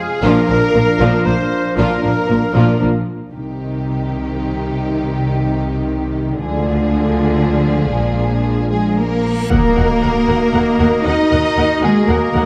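A lush cello section anchors the bass with up-front double basses beneath a focused, vibrato-laden violin melody, a background studio violin second line and a distant, smooth viola accompaniment, while mellow French horns and a tight woodwind section hold chords, a clear solo trumpet stabs until 2.8 s, and a huge, bright reverse cymbal swells into an impact at 9.5 s, giving this relentless, epic orchestral film-score passage in C minor, moving at 117 BPM in 3/4, its dark, reverberant grandeur.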